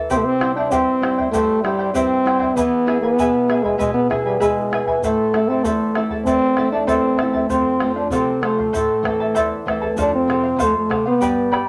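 Set in a moderate club reverb, this melancholic, wistful Andean folk passage in A minor moves at 97 BPM in a straight 2/4, with a warm, soft-attacked French horn carrying the classical-style solo melody up front over a shimmering, fingerpicked charango with double strings, a dark, small fingerpicked nylon-string guitar, a round, close and dry bombo and a grainy, bright tube shaker, its chords moving from C through E and Am to F before a new section arrives at 10.0 seconds.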